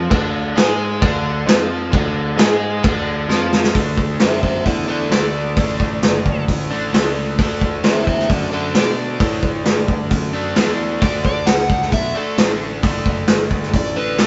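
A bright, double-tracked overdriven electric guitar riff over a Ddim chord and a growly picked electric bass open this swaggering blues rock and southern rock excerpt at 132 BPM, joined a moment later by a vintage drum kit up front in the mix, saturated and gritty, with dark cymbals, a tight kick and a medium-tuned snare. After a drum fill, the harmony moves to D at 3.8 seconds, and a dark, overdriven slide guitar with tape echo takes a solo through to the end at 14.3 seconds. The band plays live in one room with moderate studio reverb and a rolled-off, vintage top end.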